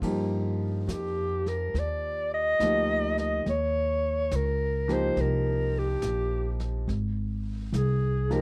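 Jazz ballad in Eb major at a slow 70 BPM with a gentle swing, tender and romantic, moving from Ebmaj7 to Eb9 and then Ab in this short section of a longer piece. A smooth, vintage-toned grand piano comps in the middle register while a woody pizzicato upright bass sits up front and a dark brush kit, with its dark cymbals and tight kick, stays low in the mix. At 0.9 s a warm clarinet enters as the solo voice, present and close with soft attacks, lyrical vibrato and a touch of slapback echo, all captured in a dry, intimate 1970s-style studio sound.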